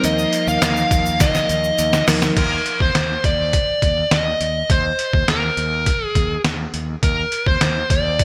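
A gritty, pitched-down sampler-style drum kit sets a straight 4/4 pulse up front, with a thumpy kick, a medium-tuned snare, hi-hat, crash and tambourine, all carrying a compressed, tape-warm character, while a round, dark fretless bass holds a low Eb beneath it. This cut from a longer 1980s-style pop piece feels nostalgic and romantic, its sound polished by a bright digital production and a moderate plate reverb. In the opening 2.4 seconds, a mellow tine electric piano, heard as if through its built-in speakers, plays a clean accompaniment over an Ebsus2 chord, joined by a very quiet, shimmering string machine with phaser and ensemble chorus and a grainy tube shaker in the background. A drum fill runs from 1.2 to 2.4 seconds, after which the piano, strings and shaker drop away and the harmony settles on Eb5. Throughout, a dark, smooth overdriven lead guitar, picked and up front, carries the melody between Bb4 and F5.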